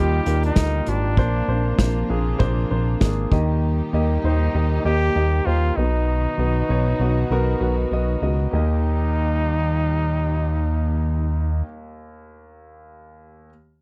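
Piano-driven pop in Eb major at 98 BPM with a light sixteenth-note swing, uplifting and anthemic, captured in a dry, close 1970s-style studio sound. A clear trumpet with vibrato and slapback echo carries the solo melody over a concert grand piano with deep bass and long sustain, while a fat analog bass of detuned sawtooth tone with a filter sweep sits up front and distant, floating strings hold soft bowed chords in the background. An acoustic drum kit with a punchy kick, played with bundle sticks, appears only from 0.3 to 3.5 seconds, and the piano continues alone from 11.6 seconds until the cut.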